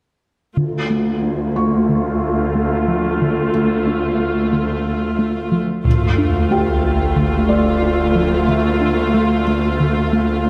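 A cinematic film cue blending orchestra and electronics, this relentless, futuristic passage moves at 91 BPM in a steady 4/4 and sits in D harmonic minor over a Dm chord. From 0.6 seconds a clear, intense viola section bowed with light vibrato carries the accompaniment up front, while a dark, lush cello section holds a low D as the bass with soft attack, expressive vibrato and portamento. Alongside them, a soft, round synth pluck spins arpeggios in the background, its wave-folded tone thickened with chorus and tape echo, as a filter sweep runs through the opening section. At 1.6 seconds a felt-muted upright piano adds mellow, intimate texture high in its range, its action noise audible and its notes trailed by tape echo. The build-up arrives at 5.9 seconds with a burst of heavy-stick taiko, vintage and band-limited, and an electronic sub drop that carries the impact through 8.5 seconds, all set in a moderate scoring-stage reverb.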